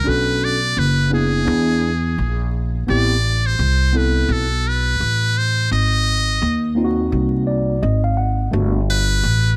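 A trumpet with a metal mute, a mellow tine electric piano and a woody, up-front pizzicato upright bass open this smoky, nocturnal jazz-hop excerpt at 85 BPM with a swung 16th-note feel, the buzzy, close-miked muted trumpet soloing with scooped notes and light vibrato over Bm9, E7 and Amadd9 chords while the clean, direct piano adds a fill at 7.1 seconds before dropping out at 8.8 seconds, all set in a small room with vinyl crackle.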